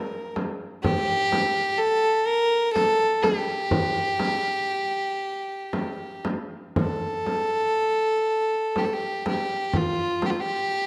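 Mournful and solemn, this Caucasian folk lament in G minor moves in a rubato 3/4 at about 56-64 BPM, cut from a longer piece. A single close, earthy fiddle carries the melody up front with a rich tone, light vibrato and an airy bow, while a deep frame drum with a large-room sound enters at 0.4 seconds. A moderate concert-hall reverb lends a dark production, and the music moves into a new section at 6.8 seconds.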